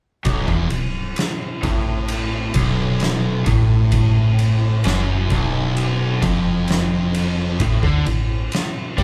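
A slow, straight 65 BPM pulse in 4/4 drives this heavy, sludgy stoner and doom metal excerpt in B minor, where a gritty, up-front, oversized low-tuned drum kit with punchy kick, fat snare and dark ride cymbal in a pumping room anchors a double-tracked, compressed overdriven electric guitar riff, two thick fuzz guitars (one distorted, the other very quiet) and a woody, round FM bass with overdrive, all played live in one room with moderate large studio reverb as the chords sit on B5 before shifting to A5 at 7.6 seconds.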